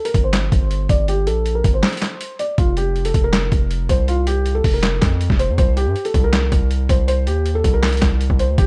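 A felt-muted upright piano opens this menacing, melancholic trap cut at 160 BPM in a half-time feel, its soft, mellow, intimate melody carrying audible action noise through a low-pass filter sweep and a break that ends at 2.6 seconds, as an aggressive, distorted 808-style bass with a noise layer and a compressed, pitched-down, gritty boom bap sampler kit of thumpy kick, high-tuned snare, handclaps and hi-hat sit up front in a dark, dry mix over chords moving from Gm to Fsus4.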